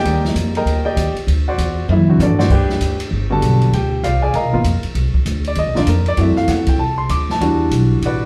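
Heard from further back in a club room with a moderate reverb tail, this relaxed jazz piano trio clip swings in G major at 196 BPM, the polished, present grand piano soloing throughout over woody, dark pizzicato upright bass and an open drum kit with dusky cymbals and a boomy kick, the kit playing a short fill at 1.9 seconds, while the harmony moves from Ebmaj7 through Gmaj7 to Em9.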